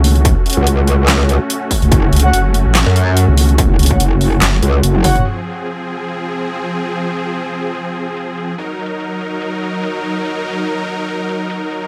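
Heavy wobble dubstep at 144 BPM in a half-time, swung feel, this menacing excerpt opens on a drop where a nasal, resonant vowel-sweep wobble bass with chorus and overdrive sits up front alongside huge detuned supersaw chords pumping under sidechain and a low-pass filter and an overdriven drum kit of deep snare, bright hats, toms and handclaps; a distorted electronic kick joins at 0.2 seconds, and at 0.6 seconds a metallic, saturated FM wobble bass and mellow brass stabs with light vibrato and digital delay enter, until a drum fill at 4.9 seconds leads into a sparser passage from 5.3 seconds where the supersaws and drums carry on over chords moving from Gbm to Fm and Gb6, all in light reverb.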